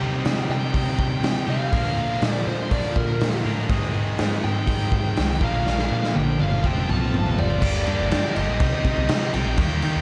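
A straight 4/4 pulse at 122 BPM drives this moody, restless indie rock excerpt, with a raw garage drum kit entering at 0.2 seconds and sitting up front, its punchy kick, medium-tuned snare, hi-hat, toms and crash carrying a saturated, gritty tone with a rolled-off top in a bright stone room. A foam-muted, picked electric bass plays underneath with a round, amped sound, while two overdriven guitars play riffs from the start: one bright and picked, the other biting and tucked into the background with an analog chorus. At 0.5 seconds a bluesy lead guitar comes in with a dark, distorted melody in a higher register. The chords move from Cm through Bb, Abmaj7 and F before a drum fill at 5.7 seconds leads into a new section at 7.6 seconds that turns to Gm and back to Cm. Light reverb and a dark, warm production round out the sound.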